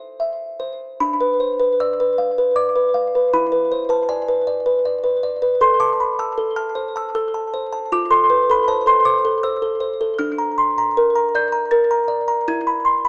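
A classical lullaby for music box in A minor, this short cut from a longer piece moves at 78 BPM in a gentle 3/4 with a straight feel, its mood fragile and eerie. The music box plays alone throughout, from 0.0 to 13.1 seconds, its delicate, tinkling plucked tones sounding from a large box and ranging from D4 up to A6. A slapback echo trails each note, and the bright instrument sits up front in a light studio reverb. The harmony drifts from A minor through a diminished chord over D and an E7, then turns to F and a B-flat over D before settling on E, lending the tune its uneasy shadow. The tuning sits slightly sharp at A4 = 443 Hz, and the rough home-demo mix carries a small-speaker sound that adds to the intimate, haunted quality.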